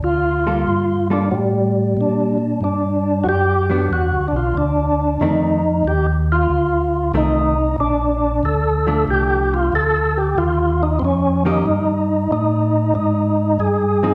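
A percussive tonewheel organ carries the melody from the opening moment, its fat, lightly overdriven tone marked by key click, chorus vibrato and a slow rotary speaker, while a second, mellow tonewheel organ supplies a round, dark bass line through its own slowly turning rotary. This is a bluesy, smoky soul jazz organ trio in G minor, swinging in 4/4 at 93 BPM, taken from a longer piece. A hollow-body jazz guitar joins at 0.5 seconds in an accompanying role, sitting lower in the mix with a clean, compressed, fingered sound. Both organs stay up front, and the harmony moves from Gm9 through Gmaj7, F7, Bbmaj7 and Eb7 before landing on Ab5 at 12.9 seconds. A wet recital-hall reverb gives the whole trio the spacious bloom of a church or concert hall.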